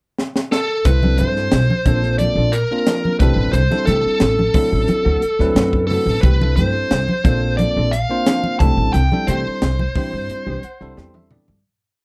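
Electric jazz fusion at 89 BPM in a straight 4/4, slick and funky. It opens with a drum fill on a crisp kit with a high-tuned snare and punchy kick playing a funk groove up front, joined by a bluesy overdriven lead guitar stating hook phrases from A4 to A5 and then a woody, thumpy pizzicato upright bass riff. Damped congas played with soft hands sit in the background beside a dark, compressed electric guitar strumming upper chord shapes through lush chorus, while a bell-like tine electric piano adds bright, rootless syncopated stabs over changes moving between C6, Bbmaj9 and D7. The dry, close mix fades out from 8.9 s as the electric piano plays a fill and the drums close on another, settling on Cmaj9.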